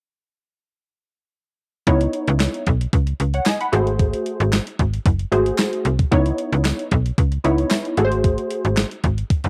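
Late-night and danceable, this early-eighties boogie funk excerpt moves at 113 BPM in C# minor, cycling between C#m9 and G#7b9 from 1.9 seconds. A snappy, metallic slap-like FM bass sits up front beside a crisp 8-bit drum machine with thumpy kick, fat snare, hi-hat and handclaps, while a punchy, detuned sawtooth-and-square polysynth comp with filter pluck and chorus adds dark chords until 8.9 seconds. A jingly tambourine enters in the background at 2.4 seconds, and the piece carries the character of a home cassette recording with digital ambience.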